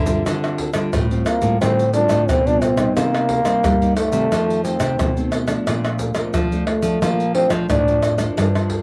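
A raspy, growling trombone with a soft attack carries the jazz-style melody up front from 1.3 s, colored by cassette tape and plate reverb, in this bittersweet yet lively samba and choro excerpt cut from a longer piece. Beneath it, one fingerpicked nylon-string guitar plays bright classical accompaniment, also through cassette tape and plate reverb, over Dm7, Cm7, F7 and Bbmaj7. A second nylon-string guitar carries the bass line with fresh strings and audible finger squeak. After a drum fill, an up-front, band-limited percussion section of egg shaker, tight surdo, pandeiro and tamborim is played with soft hands, all in a home cassette recording with modest booth ambience.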